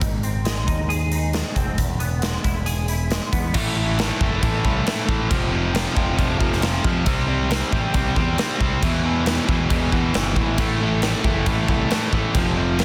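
Cathartic and restless, this quiet-loud alternative rock excerpt at 136 BPM opens with a clean, hollow-bodied semi-hollow electric guitar playing chorus-tinged arpeggios over Ab and E, a growling overdriven picked bass and a big, punchy rock drum kit with bright cymbals, before a double-tracked overdriven electric guitar takes over with an up-front riff at 3.5 seconds, joined by a crunchy, bright second guitar riff in the background from 10.6 seconds, all in a small room sound with a dense, heavily limited modern master.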